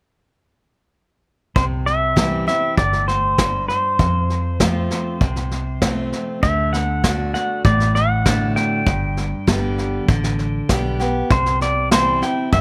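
Dry and close-miked, this down-home, heartfelt honky-tonk country excerpt brings everything in together at 1.6 seconds over a straight 4/4 feel, moving from C to F, D and G before returning to C. A warm, compressed pedal steel carries the heartfelt melody with fingerpicked slides and volume swells, while a bright, full-bodied dreadnought acoustic guitar picks the accompaniment up front. A dark, round, foam-muted fingered electric bass and a small-room brush kit with a punchy kick and a rolled-off top fill out the bottom.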